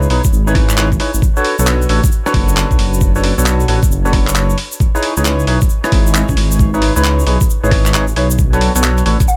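A percussive organ stab, a dark detuned saw bass and a grainy tube shaker open this soulful, moody two-step UK garage clip, cut from a longer piece and swinging on its sixteenths. The hollow, decaying organ stabs are bathed in lush chorus and tape echo, moving between C#m9 and Bm9. Underneath, the sawtooth bass rumbles deep and beating, sitting up front in the mix. A compressed, overdriven sampler-style kit of handclaps, hi-hat and rim click joins with a thumpy, gritty electronic kick, both re-recorded in a small room for a rough edge. At 9.3 seconds a bouncy, mellow square pluck with chorus sounds a single high note just as the clip ends, all under a light reverb.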